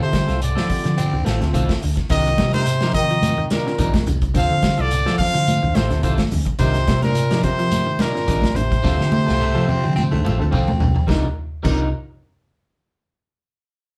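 Played live in one room with a wet studio reverb, this driving, intense afrobeat excerpt puts a clear, close-miked trumpet melody up front over a soft-edged, distant bass clarinet line and a round, dark hollow-body electric bass. A vintage drum kit with a punchy kick and dark cymbals pumps in a small room, with a fill from 8.8 seconds, while a grainy shekere sits far off and bright, hard-handed congas join at 2.4 seconds. Tucked in the background, a reedy, overdriven electric piano shimmers with fast tremolo, a slightly broken-up guitar jabs stabs, and a clean guitar picks arpeggios, while a raspy, gritty baritone saxophone adds brief lines and returns at 9.4 seconds.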